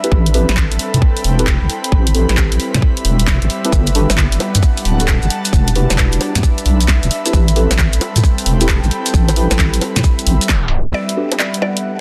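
This two-step UK garage excerpt in A dorian skips along at 133 BPM with a 65% sixteenth-note swing. Its moody Am9, Gmaj9 and Em7 chords are carried by a very quiet, ethereal pad, a bright, breathy pad with sidechain pumping, and deep, mellow chord stabs soaked in chorus and delay. Underneath, a dark wobble bass and a tight, up-front electronic kick anchor a garage kit of bongos, handclaps, hi-hat and a cracking snare, with grainy maracas joining in the background at 3.7 seconds. A band accent and tape stop at 10.5 seconds give way to a brief woody, round mallet-like pluck on D5 with digital delay from 10.9 seconds, all under light reverb and a dense, heavily limited modern master.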